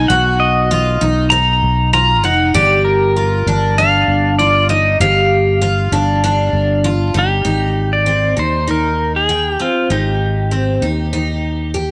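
Dream pop excerpt at 98 BPM in 4/4 with an ethereal, dreamy mood: a twangy, fingerpicked pedal steel guitar carries the slide melody with volume swells and tape echo over shimmering, octave-doubled arpeggios from a picked twelve-string acoustic guitar bathed in lush chorus and echo, while a growly, punchy fretless electric bass sustains beneath, all up front in a small room with a dry, gritty cassette sound, as the harmony moves from Bmaj7 to G7(no3) and then to Abmaj7 at 7.5 seconds.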